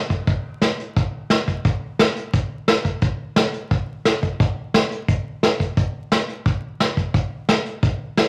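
Sunny and easygoing, this brief country excerpt in a straight 4/4 features only a vintage brush drum kit, warm and up front with a rolled-off top, its medium-tuned snare, tight kick and hi-hat played with brushes from 0.1 to 8.3 seconds in a moderate large studio reverb alongside a layer of vinyl crackle.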